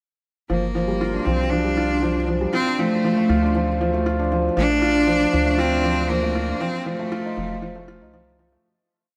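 A straight 4/4 pulse at 118 BPM carries this short, cinematic and moving piano-and-strings electronica piece in G minor, which builds from 0.5 s and fades out from 5.9 s over the chords Gm7, Dm, Bbmaj7 and F7. An intimate, felt-muted upright piano sits up front with audible action noise, playing a six-step arpeggiated loop that drifts against the bar, while a round, deep analog bass holds long gliding notes beneath. A bright, biting solo cello, bowed with vibrato, sings arching motif-based phrases until 7.9 s, and tape echo on both the cello and piano blooms into a huge ambient reverb.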